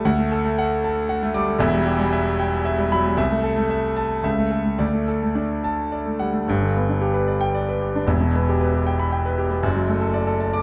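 In a triple metre pushed and pulled by rubato, this virtuoso classical piano study unfolds with a passionate, stormy character. A solo concert grand carries everything, ranging from deep bass notes up into the high treble across its brief span of 10.6 seconds. The instrument sounds clear, polished and up front, close enough that the action noise of the keys is audible, lending the performance an intimate presence. Light reverb gives the tone a little air around it. The harmony moves through a restless opening passage before a new section arrives at 6.5 seconds, settling onto a G chord and then shifting through E minor toward D with F-sharp in the bass. The passage is cut from a longer piece, so it breaks off mid-flow.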